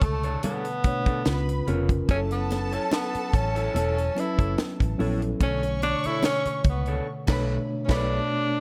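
Lush 1970s-style soul in B minor at 72 BPM, bittersweet and silky, this brief cut from a longer piece is led by a breathy, up-front tenor saxophone solo with subtone and scooped notes. Beneath it sit a mellow tine electric piano, a dark, round, foam-muted fingered bass and a tight funk drum kit with a high-tuned snare. A bowed, vibrato-rich string section carries a smooth second line with slapback echo, while an electric guitar through a small old amp adds a slightly broken-up, lo-fi riff, close, dry congas sit in the background until 6.4 seconds, and the band hits an accent from 7.1 seconds as the chords move from Bm9 through C#7 and F#m7 back to Bm9.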